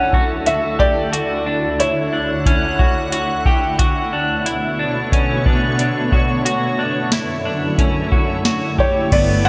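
Dream pop with a floating, blissful mood, this short excerpt from a longer piece moves in a straight 4/4 through Dmaj7, Bm7 and F#m7 chords. A shimmering, ethereal pad holds sustained chords throughout, its slow-attack, detuned sine tones carrying an octave-up sparkle, granular texture, chorus and built-in reverb. A clean, picked electric guitar plays arpeggios up front, thickened with lush chorus and digital delay. A soft, felt-muted upright piano sings an intimate melody with audible action noise and digital delay, stepping out at 3.4 seconds and returning at 8.8 seconds. An electronic vintage rhythm box, dry and overdriven, drives the groove with a deep kick, crisp snare, metallic hats and crash and ride cymbals, while a dark, round, foam-muted picked bass enters only at 9.1 seconds. The bright 1980s-style digital production is bathed in a wet, lush hall reverb.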